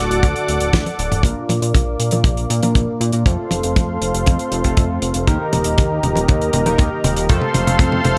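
A thick, detuned unison lead briefly sounds F#4 through digital delay for the first 0.7 seconds over a smooth, warbling analog pad, glossy chorused polysynth stabs with delay and a pulse-wave synth bass, as a damped 70s drum kit with a fat snare and a dry, tight kick join this nostalgic, bittersweet italo disco excerpt at 119 BPM. A drum fill carries into 1.2 seconds and more fills follow, while from that point filter sweeps shape the pad and polysynth over a progression of D, Bb, F and Eb in a small, lightly reverberant room.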